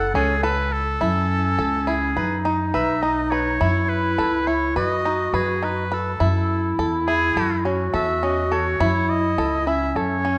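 Urgent and hypnotic, this contemporary chamber piece in an uneven 9/8 meter moves at 208 BPM counted in eighths, centered on F# dorian, and is cut from a longer work. A clear, punchy oboe carries the melody up front with classical-style vibrato, while a breathy clarinet sings a second line beneath it, its jazz-inflected phrasing full of scooped notes and a smooth top. A bluegrass banjo, played with fingerpicks, spins twangy, percussive arpeggios, and a woody, dark upright bass plucks the low end, sitting close in the mix. The harmony opens on a rootless F# minor before moving through F#m7, Badd9, B over F# and Amaj7, returning to F#m7 at 8.8 seconds. A moderate scoring-stage reverb gives the ensemble space, and the sound carries the worn, warbling pitch drift of old cassette tape.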